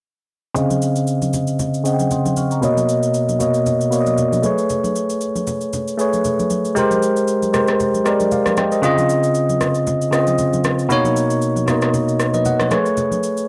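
Soulful and relaxed, this amapiano fragment puts a bright, bell-like tine electric piano up front, low-pass filtered with a filter sweep and a cassette tint, moving through major-ninth chords over a layered electronic shaker and rim click and soft-handed, ringing congas sitting close and dry in the background, with moderate spring reverb and the homespun character of a cassette recording.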